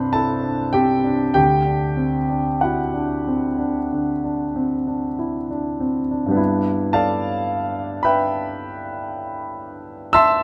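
Impressionist classical solo piano in G major, dreamy and hazy, drifting in a rubato 4/4 at roughly 45-58 BPM, with a warm, polished grand piano sitting up front with long sustain, close detailed miking and light reverb, moving from C69 to D9 before a new section opens on G6 at 6.4 seconds in this brief fragment of a longer piece.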